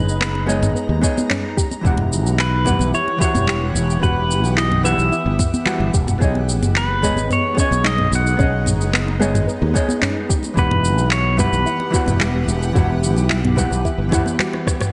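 A growly, up-front fretless bass, a dark hollow-body jazz guitar with digital delay, a twangy pedal steel melody with sampler grit and tape echo, and a shimmering ethereal pad open this smooth sunset chillout piece at 110 BPM together. They are joined by soft round chorused pluck arpeggios, bright background congas, a tape-warm R&B kit of handclaps, rim click, shaker and toms, and a soft electronic kick from 1.0 seconds, all moving between B69 and Emadd9 under light reverb until a drum fill at 14.1 seconds.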